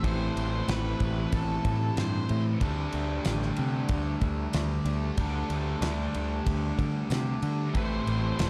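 A dark, hazy production with a small room around it opens this dreamy stretch of shoegaze-leaning dream pop, cut from a longer rock piece moving at 94 BPM in a straight 4/4. A growling, punchy picked bass sits up front with overdrive, while a loose indie drum kit supplies a fat snare, tight kick and ride cymbal. Two riffing guitars thicken the middle: a biting overdriven part carrying reverse reverb and a murky fuzz guitar with subtle chorus tucked behind it. Floating in the background, a warbly, lo-fi tape-like pad holds detuned, nostalgic chords with chorus and its own reverb, as the harmony drifts from Am7 to Dsus4 and back. An octave-fuzz lead guitar with slapback echo sings a brief melody at the start, falls silent after 2.4 seconds and returns at 7.8 seconds, while a very quiet, jingly tambourine slips in at 3.3 seconds.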